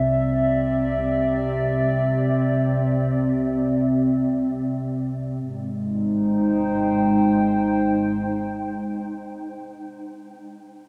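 A warbly, tape-like pad carries this serene ambient fragment, sustaining chords up front in free time in Ab lydian. Its detuned, lo-fi tone, thickened by chorus and its own built-in reverb, has a mellow, nostalgic glow with slow attacks and long releases. Beneath it from the start, a studio double bass section plays bowed low notes in the background, lush and smooth with vibrato, and it fades out over the first 5.4 seconds before falling silent at 8.2 seconds. The harmony rests on Cadd9 and then shifts to Abmaj7 at 5.4 seconds, opening a second, equally peaceful passage. The whole mix is soaked in a huge, wet ambient reverb with a long tail, giving the piece a dreamy, floating character as it carries on to the 10-second cut.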